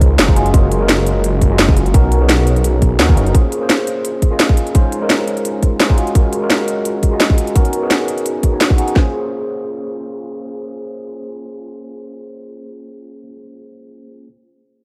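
An overdriven tine electric piano carries this melancholic, lush liquid drum and bass piece at 171 BPM in Bb minor, sounding bright and gritty through a combo amp, with phaser, a low-pass filter and tape echo on its chords. Beneath it, a menacing, saturated bass of detuned sawtooth and sine tones rises with a filter swell, sustaining up front until 3.3 seconds. Two layered electronic drum kits sit close in a small room ambience, combining a tight kick, a cracking snare and crisp hi-hats with a tape-warm tone on lightly swung sixteenths, and the kits drop out at 8.9 and 9.0 seconds. The harmony moves through Gbmaj7, Bmaj9, Bbm9 and Dbmaj9, then cycles back through Gbmaj7 and Bmaj9 to Bbm9, after which the electric piano carries on alone. A light reverb gives the sound a soft sheen, and the clip is cut from a longer piece.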